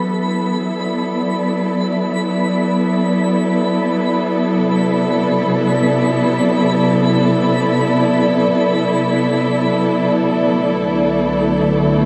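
Ambient music in free time, this short cut from a longer piece feels weightless and luminous, set in a vast, echoing space with a long cathedral reverb and the soft grain of cassette tape. A dark studio string section sits up front, sustaining bowed chords with expressive vibrato and portamento as the harmony moves from Bm to Cmaj7 at 4.5 seconds. High above, a twinkling granular texture with an octave-up shimmer hovers on B5 throughout, faint and sparkling in its own reverb. Near the close, a round sub bass on C2 arrives at 10.2 seconds deep in the background, and a tense, string-like drone with a noisy edge and its own vibrato fades in at 10.4 seconds on D3 to A3.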